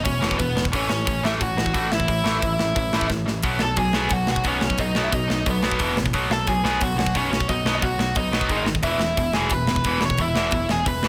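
A dark, distorted bluesy lead guitar carries the melody up front with digital delay in this rowdy, rebellious punk rock excerpt at 178 BPM in B mixolydian, driven by a biting overdriven riff guitar, a growly picked electric bass and a tight, polished metal drum kit in a big, airy room, with a very quiet cranked stack guitar joining the riff at 3.4 seconds after a brief drum fill, all under light reverb.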